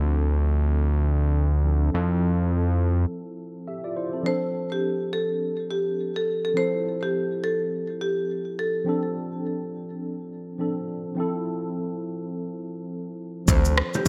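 A mellow, chorus-tinged tine electric piano with a filter sweep over its first 4.3 seconds carries this sultry, hypnotic afrobeats excerpt in D minor at 104 BPM with a swung 16th-note feel, alternating Dm7 and Fmaj7 over a fat, saturated sawtooth analog bass that drops out at 3.1 seconds for a break, while a marimba with medium mallets plays a delayed melody before an electronic afro-pop drum kit with a deep kick, rim click, shaker and gated reverb, along with ringing background congas and bongos, arrives at 13.5 seconds, all set in a plate reverb with bright 1980s-style digital production.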